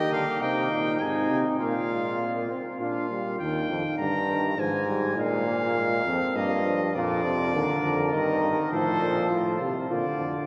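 Serious and driving, this classical brass canzona fragment in triple time sets a clear, up-front trumpet melody over a warm, vibrato-tinged flugelhorn second line that falls away at 3.4 seconds and returns at 7.0 seconds, while a trombone supplies accompaniment and a bright bass trombone with vibrato anchors the bass, all four distant and roomy in a wet cathedral reverb.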